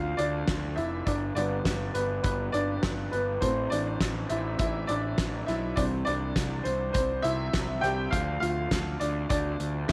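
This excerpt opens on a clear, woody upright piano and a fuzzy, picked electric bass sounding together, with a loose indie drum kit joining at 0.2 seconds. It is piano-driven pop in D dorian at 102 BPM in a straight 4/4, dramatic and driving in mood. The slightly detuned piano carries the lead across the whole passage, ranging from D3 to G5 over chords that move from Dm to G, Am and C before returning to Dm at 8.1 seconds. The overdriven bass sits low and punchy, bright and amped in the front of the mix. The acoustic drums offer a fat snare, a punchy kick and hi-hat, their tone dark and smooth with a rolled-off top. A moderate echo-chamber reverb with a 1.8-second decay gives the studio sound a roomy depth.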